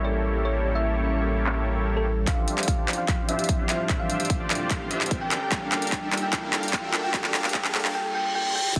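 Emotional and dreamy, this future bass excerpt runs at 148 BPM in 4/4 with a half-time feel, in D minor and tuned slightly flat to A4 = 439 Hz. A round, tine-like thumb-piano-style FM pluck carries the melody with chorus, delay and sidechain pumping, over a worn, slightly out-of-tune electric piano heard through a combo amp with phaser and delay. Alongside them, a huge, lush detuned supersaw riff pumps behind a filter that sweeps through the build-up from 2.3 seconds, while a very quiet, ethereal airy pad holds sustained chords. A deep, saturated sub bass sits up front at the opening, drops out at 2.3 seconds, and returns at the very end. Overdriven, up-front drums arrive from 1.5 seconds with claps, hi-hats and crash, joined by a layered electronic kick at 2.3 seconds for a long drum fill, as a riser and reverse cymbal build toward an impact in the background. The chords move from A7b9 to Dm11 and then Gm9, all within a dense, heavily limited modern master with light reverb.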